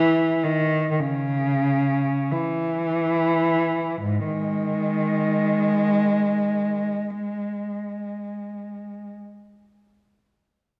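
Classical music for unaccompanied cello in free time, this lyrical, serene fragment of a longer piece features a single bowed cello with a woody, sul tasto tone and vibrato, slowing down over the first 4.0 seconds while moving between Ab2 and Ab3, all bathed in the wet, dark ambience of a scoring-stage reverb.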